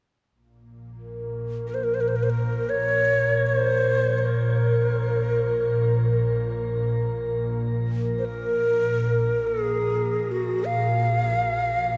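Unfolding in free time, this short cut from a longer piece of world meditative music feels spacious and haunting. A glass harmonica enters first at 1.0 s, holding a single glassy, pure note in the background, its slow, smooth onset dressed in shimmer reverb. From 1.1 s an ethereal pad spreads out a low drone, blending detuned sawtooth and triangle tones with a noise layer and ensemble chorus into a mellow, airy bed that sits up front. The cedar flute joins at 1.7 s to carry the melody in its middle register, with a breathy, hollow, woody tone, gentle vibrato and a soft attack, also haloed by shimmer reverb. A huge ambient reverb with a long 7.7-second tail surrounds the whole performance, lending it a vast, drifting sense of space.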